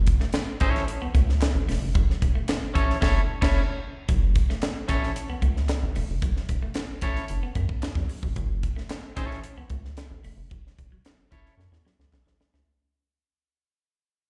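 A rubbery, dark square-wave bass opens this driving, sly funk piece at 112 BPM in F# minor over an F#m7 chord, joined by a dry, tight drum kit with a high-tuned snare, a clean hollow-body guitar riff and a bright, scooped clean electric guitar, both guitars carrying slapback echo, along with distant, crisp group handclaps that also have slapback echo, captured live through a venue's sound system, with a band accent at 3.0 seconds, a fade-out beginning at 4.1 seconds and a drum fill arriving at 11.6 seconds.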